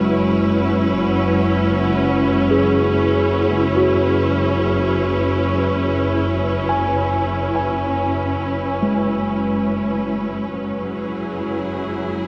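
This ambient passage, taken from a longer piece, moves at a slow 72 BPM in 4/4 with a straight feel and a reflective, serene mood, resting on an F#7sus2 chord. A lush symphonic string section sits up front, holding sustained bowed chords with expressive vibrato and portamento. A mellow tine electric piano plays clean, direct arpeggios that pass through a tape echo. Underneath, a muted chamber double bass section holds a low F#1, its bowed, con sordino tone dark and veiled with a soft attack and smooth top. In the background, a vintage analog drone of sawtooth and pulse waves evolves and warbles through chorus, with a slow attack and long release, until it stops at 10.6 s. A huge, wet reverb with an 8.5-second decay and a dark, warm production give the whole passage a deep, enveloping space.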